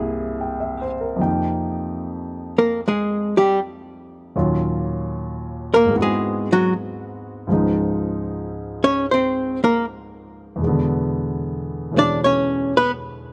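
A dark, clean archtop guitar and an intimate baby grand piano, its action noise audible, open together on a C7b13 chord in this wistful, smoky jazz ballad fragment in F minor, swung at 76 BPM in 4/4 and tuned slightly below standard pitch. From 1.2 seconds the compressed, hollow-body guitar takes a solo up front over the piano's accompaniment, moving through Fm11, Ebm9, Ab7alt and Dbmaj9 before landing on E7. The guitar drops out at 12.9 seconds, and the piano rings on alone in light reverb until 13.3 seconds.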